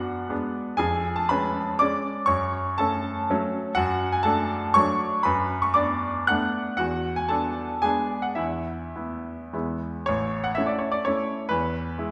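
A clear, natural-sounding baby grand piano plays alone and up front, spanning from deep bass to high treble in a graceful, proud romantic dance in triple time with dotted rhythms and a flexible rubato feel. The harmony brightens from its minor-key opening into a major-key glow at 3.8 s, and a new passage begins at 10.1 s before this short cut from a longer piece ends at 12.1 s. The piano's short sustain sits inside a wet scoring-stage reverb that lends a spacious, hall-like bloom.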